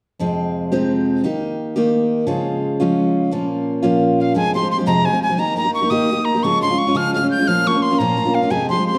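A breathy, reedy tin whistle carries the melody from 4.2 seconds, its tongued notes showing a clear chiff and a touch of vibrato, close and up front over a picked steel-string acoustic guitar that has played full-bodied accompaniment, finger squeak and all, since the start. This spirited, dark Celtic jig in F minor moves at 116 BPM in 6/8, cycling twice through Fmadd9, Eb, Db and Bbm. A wet recital hall reverb and a dark, warm production wrap the lively excerpt, which is cut from a longer piece.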